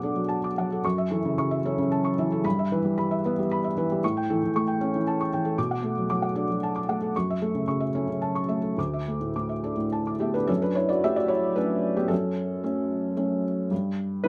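A felt-muted upright piano plays alone from the very start, soft and intimate, sitting up front with its action noise clearly audible in a light reverb. This reflective, wistful piece of neoclassical minimalist piano moves in a rubato three-four, its mellow chords circling from Bm7 through F#m7, Em/G and A7 before settling on Dsus2. At 10.5 seconds the music shifts to a new passage on F#m, and the harmony drops away at 13.7 seconds, just before this fragment of a longer work ends at 14.3 seconds.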